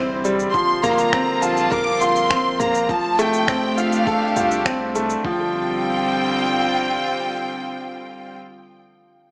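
A straight 4/4 pulse drives this hypnotic, melancholic piano and strings electronica, cut from a longer piece. It opens on a drop where a tape-textured electronic kit of finger snaps, shaker and toms joins a muffled, thumpy kick, while a round sine sub bass pumps in the background beneath reedy, gut-string chamber strings holding sustained chords. Up front, a lush, focused violin section carries the melody over a brilliant, woody upright piano riff with digital delay; the drums drop out around 5.2 s, and the piano rings on after the other parts fade, lasting until 9.3 s, all set in a moderate scoring-stage reverb with a small-speaker sound.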